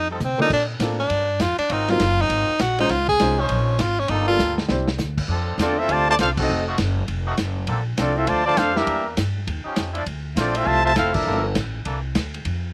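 Big band swing jazz in F major at a brisk 201 BPM, this brassy, swinging fragment opens with a breathy, clear tenor saxophone solo with vibrato and scooped notes, backed by baby grand piano, a woody pizzicato upright bass, a muffled lo-fi vintage drum kit with a tight kick, and a bright, nasal muted trombone section holding sustained chords. At 5.6 seconds a smooth-topped trumpet section takes over the melody up front, while a background trombone section with light vibrato and slapback echo plays a second line, and the band hits accents at 6.3 and 11.1 seconds. The sound is dry, with little reverb and an open-air feel, and the harmony moves through rich extended chords.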